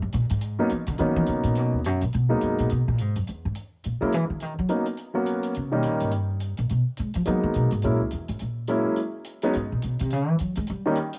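A woody, thumpy pizzicato upright bass opens this moody, swinging jazz piano trio fragment, carrying a featured solo from the start and sitting up front in the mix. A dark, smooth hi-hat with a rolled-off top joins at 0.1 seconds, and a clear concert grand piano with a deep, natural tone enters at 0.6 seconds to carry the melody, also placed up front. The tune moves briskly at 210 BPM in 4/4 with a swung eighth-note feel, in G# minor. The harmony moves from G#m11 and G#m9 through chords such as Bmaj9, D#7 and F#7 before reaching C#madd11 and a final D#. Light reverb and a small-room ambience give the trio an intimate, close-quarters sound.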